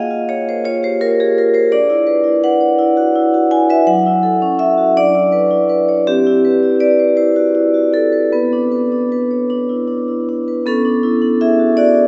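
Flowing and hypnotic, this brief fragment of a contemporary classical piece is for solo vibraphone, played with medium mallets and the motor switched off. The pulse moves in a lilting six-eight with a free, rubato feel, the bars stretching and settling as the harmony drifts from a lone A#5 through D69, F#m7, Dsus2 and Cmaj7 before resting on Bmadd9 near 8.3 seconds. The instrument sits up front, its tone metallic and ringing across a span from F#3 to G#5. Around it spreads a long, wet cathedral reverb that places the listener further back in the room and softens the upper edge of the sound. At 10.7 seconds a new section opens on a Bm11 chord, and the piece is cut off shortly afterward at 12.1 seconds.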